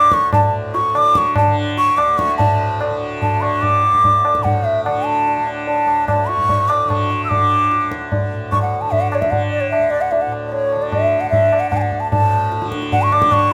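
A breathy bamboo bansuri with vibrato and a crisp attack sits up front, carrying the melody in raga Hamsadhwani on D over a softly plucked, buzzing, shimmering tanpura drone and high-tuned, short-ringing tabla that enters at 0.1 s, in this serene, radiant Hindustani classical excerpt in 3/4 at 148 BPM that speeds up throughout, heard in a moderate small-room ambience.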